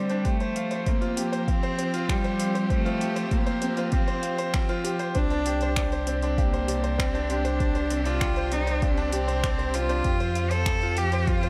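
A bright baby grand piano sits up front with a brilliant, intimate riff, its long sustain and audible action noise giving this moving, hypnotic piano-and-strings electronica its character. A single bowed cello carries the melody with clear, focused vibrato under a low-pass filter, while a studio string section holds sustained chords in the background, and a very quiet, detuned analog pluck adds chorused sawtooth-and-square arpeggios with a filter sweep and a noise layer. A deep, overdriven electronic kick drum sits up front alongside a layered deep house kit of finger snaps and hi-hat, also overdriven and re-recorded in a small room. The opening build-up gives way at 5.2 seconds to a drop, where a round sine sub bass enters with sidechain pumping as the harmony moves from Fsus2 to Csus2. A moderate concert hall reverb gives the whole cut, taken from a longer piece, a spacious glow.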